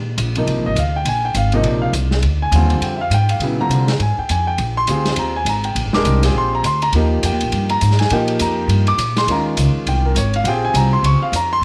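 A brisk modal jazz groove at 204 BPM in 4/4 swings its eighth notes lightly, giving this short excerpt cut from a longer piece an open, searching mood. A woody, thumpy upright bass with gut strings sits up front, plucked from the opening instant and colored by tube saturation as it roams between Eb1 and C3. A vintage drum kit joins at 0.2 seconds with hi-hat, ride and snare, its muffled, lo-fi sound, dark cymbals and rolled-off top placing it further back than the other parts. At 0.4 seconds a warm grand piano enters, intimate and natural with audible action noise and long sustain, spanning a range from C3 to D6. The harmony moves from Bb9 to Eb at 4.6 seconds and settles on Eb13 at 9.3 seconds as the opening section repeats. A moderate plate reverb and small room ambience wrap the trio in a close, cozy space.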